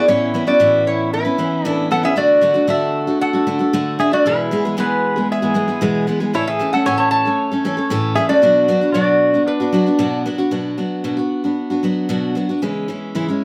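Reflective and melancholic, this excerpt from a longer acoustic folk piece moves at a moderate, straight four-beat pace suited to a duo or small band. A lap resonator guitar carries the melody with a metallic, nasal slide tone, played with fingerpicks and set in plate reverb. Beneath it, a pedal steel guitar adds a softer second line, clean and twangy, with compression, slide and volume swells. A picked steel-string acoustic guitar sits up front as the accompaniment, its auditorium-bodied sound spanning low bass notes to the middle register. The two slide instruments fall silent at 10.2 seconds, leaving the acoustic guitar alone through a brief closing passage that moves from B minor to C-sharp minor by 12.6 seconds. A light reverb gives the whole recording a modest sense of space.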